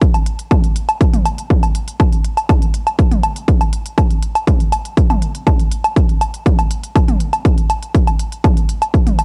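A straight 4/4 techno pulse at 121 BPM drives this short, melancholic cut from a longer piece, anchored by a heavy, overdriven electronic kick that sits up front from 0.0 to 9.0 seconds. Alongside it, a layered techno drum kit of smooth hi-hats, toms and woodblock runs through 9.2 seconds, its overdrive and cassette tape grit matching the kick's. The dry sound carries the rough character of a home cassette recording.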